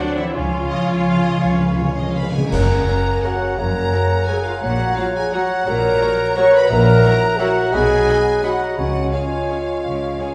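Sweeping and elegant, this orchestral ballroom waltz moves in a flexible, rubato three-beat lilt, cut from a longer piece. A clear, focused violin section carries the melody with vibrato, while a very quiet, smooth second violin section, an airy silver flute in the background, a mellow, roomy oboe and a clarinet weave second lines around it. Violas sit lush and distant behind them, a very quiet bassoon adds accompaniment, and a French horn section holds sustained chords that stand out as the fullest voice in the texture. Cellos and double basses anchor the bass, the basses entering at 0.3 seconds. Dry timpani with calf heads play a fill up to 2.5 seconds, where a band accent marks the arrival of the next section, and dark cymbals with bass drum sound until 3.2 seconds. A recital hall reverb places the orchestra further back in the room.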